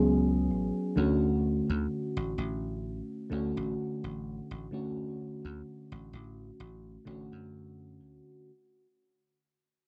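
A slow 64 BPM pulse in 4/4, with a light swing on the sixteenths, sets this short vaporwave excerpt drifting in a dreamy, nostalgic mood. A mellow FM electric piano carries the accompaniment from the start to 8.5 seconds, its round, full-bodied tone touched by a faint noise layer, subtle chorus and analog delay as it moves from Amaj13 to Dmaj7. Beneath it, a dry thumbed slap bass sits up front with a bright, punchy, foam-muted bite, playing low in its register until 8.2 seconds. A moderate plate reverb with a 3.0-second tail gives the recording a soft, hazy space. The whole fragment fades out from beginning to end, as if lifted from a longer piece.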